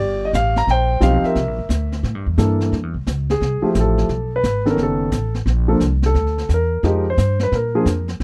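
A polished, present baby grand piano leads this playful, relaxed swing jazz trio excerpt in F major at 176 BPM, carrying the melody before taking a solo from 2.7 seconds over harmony that moves from Eb69 and a rootless C13 through Fmaj9, B9, Bbmaj7 and Fm9. Up front beside it, a woody, thumpy pizzicato upright bass with steel strings anchors the low end. A brushed kit with a medium-tuned snare, boomy kick and hi-hat sits softer in the mix, all captured in a dry, close 1970s-style studio sound.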